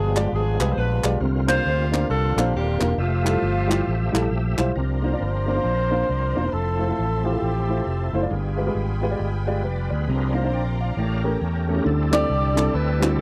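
Uptempo gospel with a soulful, uplifting swing, cut from a longer piece, where a clear, up-front saxophone section carries the melody over woody upright piano, a gritty overdriven tonewheel organ with slow rotary speaker and chorus vibrato, punchy fingered electric bass and hollow group handclaps. The saxophones drop out at 4.3 seconds and the claps at 4.7, then at 4.8 seconds a lush, distant string section holds chords and a breathy, whispered trumpet takes a brief intimate solo with scooped notes, before saxophones and claps return at 12.1 seconds. The sound is dry and close, in the manner of a 1970s studio recording.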